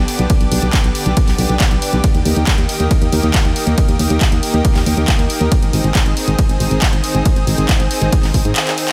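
A round, punchy FM bass opens this short cut from an uplifting trance track at 138 BPM in a straight 4/4, its fast attack and mellow decay kept up front with tube saturation and sidechain pumping, spanning Ab1 to Ab2. Almost at once a lush, thick unison pad arrives, built from detuned sawtooth and square waves with a slow attack, long release and bright chorus sheen, sustaining chords from D3 to Eb5 that also pump against the beat. A layered, produced big-room dance kit of handclaps, hi-hat and ride cymbal sits in a small room reverb, while a punchy, tape-warm analog kick enters at 0.3 seconds and stays prominent, touched by the same small room. The harmony moves from G/B to Eb at 2.0 seconds and to Ab at 5.5 seconds, giving a bittersweet yet driving mood. A drum fill at 8.7 seconds closes the passage, and the overall mix is dry and loud.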